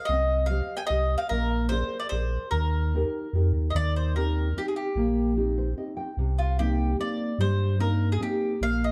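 In a straight-feeling three-beat lilt, this lively, romantic Italian folk serenade sets a round, double-strung mandolin melody up front over a full-bodied, thumb-plucked nylon-string guitar and a smooth, sustained sine sub bass. Cut from a longer piece, it moves from C minor through B-flat seventh to E-flat, then into a second section where the guitar slips in a short fill at 5.4 seconds before settling on C minor seventh. Light reverb and a dark, warm production surround the trio.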